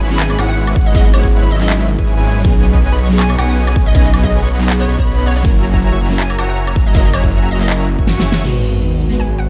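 Glassy, bright digital keys and a thick, detuned saw bass pump under sidechain in this emotional, lush future bass excerpt at 160 BPM in a swung half-time feel, with a dense, compressed supersaw riff, a hollow, bouncy square pluck melody and a soft, dreamy lead's arpeggios trailing dub echo over a tape-warm big-room kit of huge snare, crisp hats, claps, ride, crash and woodblock plus a punchy electronic kick, until a drum fill gives way at 8.4 seconds to an impact where a breathy, airy pad and a background sub drop enter on G#m7.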